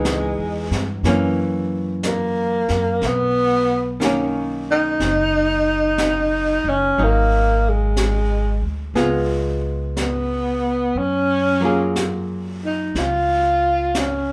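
Swung eighths in 4/4 carry this late-night, intimate jazz ballad excerpt, where a breathy, whispered tenor saxophone leads up front with subtone, vibrato and scooped notes over a dark, clean hollow-body archtop guitar, woody pizzicato upright bass and a brushed drum kit with a high-tuned snare and hi-hat, the band playing live together in one room with light reverb.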